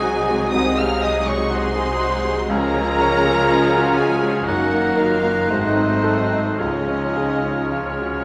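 In a rubato 4/4 at 53-62 BPM, this lush, lyrical romantic excerpt for piano and orchestra in Db major sets a clear, open concert grand piano and a smooth-topped violin section with vibrato on the melody, while an airy flute, a soft-attack oboe, a bright close-miked clarinet and a distant second violin section weave quieter lines above bowed violas, a mellow bassoon, a rich cello and double bass foundation and background trumpet stabs, with very quiet French horns and trombones holding sustained chords from 0.5 s, all set in a wet scoring-stage reverb.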